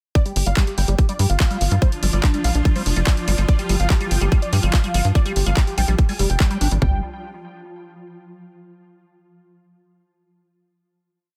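Psychedelic trance at 144 BPM in a straight 4/4, this short, complete piece feels intense and hypnotic from its first beat at 0.2 seconds. An up-front drum and bass drum kit drives a tight four-on-the-floor kick with floor toms, while a techno drum kit adds overdriven, programmed closed and open hats and a clap backbeat, both sitting in a small room ambience. Underneath, a punchy sawtooth-and-square sequencer bass gallops in sixteenth notes with a fast, decaying filter pluck, and a squelchy, resonant acid bass in the background runs an accented three-step loop that drifts against the bar through phaser and tape echo. On top, a thick, detuned unison lead with a sub octave and vibrato repeats a riff melody over a pedal note in sixteenths, carrying phaser, tape echo and sidechain pumping. From 1.3 seconds a swarming, granular drone holds a bright, tense high note with slow attack and built-in reverb before the groove gives way to a final chord at 6.8 seconds, all within a dense, heavily limited modern master.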